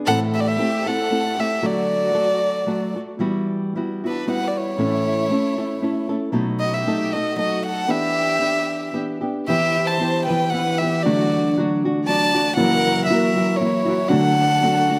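Set in a rubato 3/4 at 115 BPM, this dramatic, passionate mariachi folk passage in E minor, cut from a longer piece, opens with a small, fingerpicked nylon-string guitar up front carrying the accompaniment. A single dark violin takes the melody with an intimate, boxy sul tasto tone, airy bow and light vibrato, while a clear, focused chamber violin section plays a distant second line in the background. At 9.5 seconds a concert harp enters with mellow, thumb-plucked, ringing arpeggios, all heard through close, detailed microphones in a moderate concert hall reverb.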